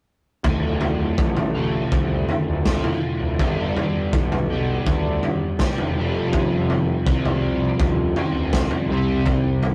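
Mysterious and dark, this psychedelic rock excerpt moves in a straight 4/4 through Dm, G, Fsus2 and C5, with a crunchy, double-tracked overdriven guitar riff coloured by rotary speaker sitting up front from 0.5 seconds. Beneath it, a fuzzed, punchy picked electric bass and a raw garage drum kit of kick, snare and toms, gritty with a rolled-off top and a pumping small-room sound, both start at 0.4 seconds. Moderate reverb and a rough rehearsal-room quality give the whole an unpolished feel.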